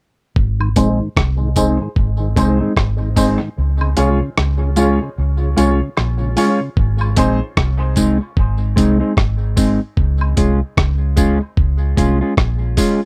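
A round, foam-muted electric bass and a gritty, overdriven sampler-style drum kit with a thumpy kick open this hazy, laid-back dub reggae piece at 75 BPM in Ab major, soon joined by a mellow tonewheel organ with slow rotary and dub echo in the background, echoing woodblock and tambourine, a dark, clean fingered electric guitar up front, and clear, woody upright piano stabs, while a filter sweep runs until 6.8 s, the kick falls silent from 3.6 s to 6.8 s, and the piano drops out at 7.4 s, all captured in a dry, close 1970s-style studio sound.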